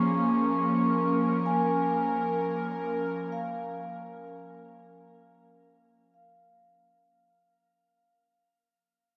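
An airy, breathy pad with a detuned edge sits up front, holding soft sustained chords through chorus and shimmer reverb, while a ringing, metallic vibraphone played with medium mallets spins high arpeggios through delay and shimmer reverb, all set in a vast, echoing cathedral space with a cassette-tape character in this serene, spacious ambient fragment that fades out from its opening moment to 7.1 seconds.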